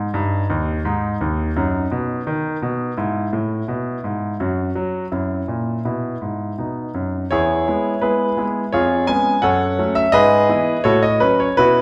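A clear, intimate concert grand piano plays alone from the start, its audible action noise, deep bass and long sustain placed up front in a polished, present sound, carrying a cheerful, graceful classical-period sonatina in E major at 84 BPM in a straight 2/4. The piano spans D#2 to G#5, moving through chords such as B/F#, F#7 and E/B before a new section begins at 7.3 s on E and turns toward F#m. A wet recital hall reverb with a 1.4-second decay surrounds it, and the passage is cut from a longer piece, closing at 11.8 s on F#m/A.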